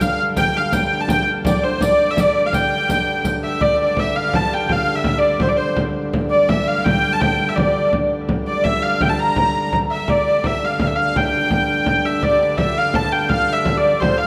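Ancient and driving, this medieval dance in triple time sets a clear, airy-bowed hurdy-gurdy melody with tape echo up front over a reedy, breathing pedal harmonium drone and a deep, saturated frame drum, while a riq's bright jingles sit in the background until 3.4 seconds, all in a wet recital hall.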